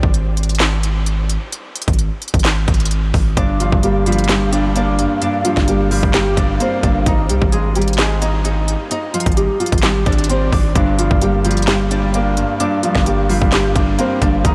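Drenched in a huge, dreamy reverb, this eerie, hard-hitting trap piece in G phrygian moves at 130 BPM with a half-time feel, opening on an up-front, deep sine 808 bass and a tape-tinged electronic kit of hard-clipped kick, sharp snare, crisp hats and handclaps before a fingerpicked classical nylon-string guitar, finger squeaks and all, enters at 3.4 seconds with subtle chorus and delay, joined by a dark, mellow baby grand piano that plays until 7.1 seconds and returns at 10.8 seconds over a Gm, Ab5, Gm progression.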